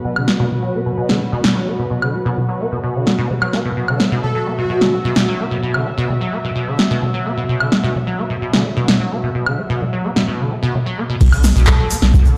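A big, reverberant sound fills this hypnotic, trippy acid house cut, as if played on a large system in a bare room, with a moderate plate reverb and digital ambience washing over it. At 129 BPM in straight 4/4 and B minor pentatonic, a lush, warbling unison pad holds sustained chords with chorus and sidechain pumping while a filter sweep runs across it. Up front, a squelchy, resonant sawtooth acid bass carries the riff with ensemble chorus and tape echo, joined by a punchy, overdriven analog drum machine of dry snare, handclaps, hi-hat, woodblock and crash cymbal. An airy, dreamy lead with vibrato and dub echo slips in briefly around 4.2 seconds and again near the end. At the drop at 11.2 seconds, a deep, tape-colored electronic kick, a round, dark analog bass on B1 and a grainy egg shaker in the background arrive for the closing moments of this cut from a longer piece.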